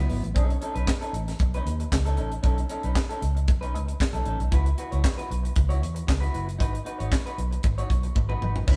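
A glamorous, danceable disco excerpt at 115 BPM opens with a slightly broken-up, compressed electric guitar bathed in spring reverb and a dark, round, foam-muted fingered electric bass that sits punchy and up front, joined at 0.1 s by a dry, tight funk kit with a high-tuned snare, handclaps, hi-hat, crash and toms, moving through B9, C#m7 and G#m7 as the band plays live in a moderate stone room before a drum fill at 8.2 s.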